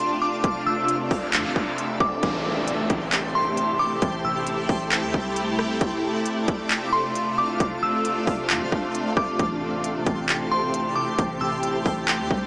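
A huge ambient reverb with a long 6.8-second tail hangs over this short excerpt of atmospheric cloud-rap, heard through a small-speaker sound that gives it a boxed-in haze. The mood is dreamy and blissful, set at 134 BPM in 4/4 with a half-time feel, drifting between F6 and Am7 chords. A shimmering, ethereal pad sits up front with detuned unison voices, an octave-up shimmer, chorus, phaser and sidechain pumping, while a glassy, crystalline FM bell carries a mellow, warbling vintage melody high in the register through chorus, phaser and digital delay until 11.6 seconds. Behind them, a twinkling granular texture sparkles in its own reverb, and a soft, round 808-style bass rests deep and dark in the background. A trap kit enters at 0.4 seconds, placed up front with a hard-clipped kick, crisp hi-hats, handclaps and rim clicks. A background noise sweep passes through early on, followed by a downlifter that ends at 5.8 seconds.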